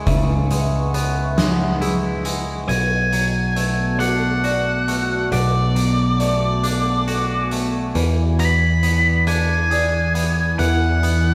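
A wet stone room wraps this brief, cinematic post-rock passage, cut from a longer piece, with the sound of a band playing live together in one space. In a slow, brooding 6/8, a morphing wavetable pad holds sustained chords through chorus, phaser and its own reverb, while a soft, felt-muted upright piano sits in the background with audible action noise, its mellow arpeggios set against a twangy, clean, compressed electric guitar picking arpeggios of its own. A punchy picked electric bass stands up front, and an oversized low-tuned drum kit adds a fat snare, a punchy kick and hi-hat with a saturated, gritty edge. At 2.7 seconds an octave-fuzz lead guitar enters with a dark, distorted melody pushed up front, as the harmony moves from C#m7 to Bm7. The passage shifts to E7 at 8.0 seconds and runs to its cut at 11.3 seconds.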